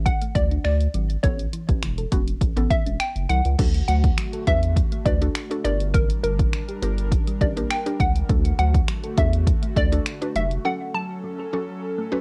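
A hollow, bouncy square-wave pluck carries the melody with a warbling, vintage cassette tone, riding over a euphoric, carefree dance-pop groove at 102 BPM in D major, where a woody mallet-like synth pluck and a round analog bass both pump against the punchy, up-front deep house kit of kick, hi-hat, finger snaps and crash. A very quiet, tine-like thumb-piano pluck spins arpeggios beneath, and from 3.8 seconds an airy, breathy pad adds sustained chords that also pump, as the harmony moves from D and Aadd9 through Gm to F#m. The drums and bass drop out at 10.6 seconds for a short break, leaving the plucks and pad in a dry, homespun cassette recording cut from a longer piece.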